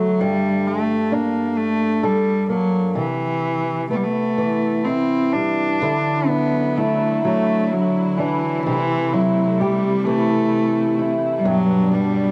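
A single bowed cello, nasal and intense with light vibrato, carries the melody up front over a dark, woody fingerpicked old ladder-braced acoustic guitar with analog delay on the cello and cassette tape on the guitar, in a nostalgic, wistful Celtic slow air in D mixolydian at a rubato 43 BPM in 6/8, moving from Gmadd9 to Cmaj7 before a smooth, even studio string section enters with sustained chords at 5.8 s through Dadd9, C6 and G, all in a wet booth ambience on a home cassette recording cut from a longer piece.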